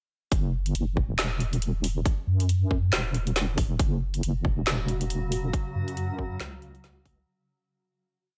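A half-time groove at 138 BPM in 4/4, with a 58% swing on the sixteenths, drives this short, complete deep dubstep piece, which drops in at 0.3 seconds and carries a cavernous, brooding mood over an F#5 chord. A tight, tape-warm electronic kick sits up front, joined by a deep house kit of woody snare, dark closed and half-open hi-hats and handclaps, both placed in a studio reverb. Alongside them, a deep, saturated wobble bass built from detuned square and sine tones moves between E1 and F#2, its modulated phrases changing wobble speed while a chorus thickens its compressed, shadowy tone. At 4.8 seconds a granular cloud pad swells in slowly with blurred, evolving sustained chords between C#3 and F#4, bathed in its own reverb and sitting low in the mix. The overall sound is dry and close, and from 5.0 seconds the track fades out to its end.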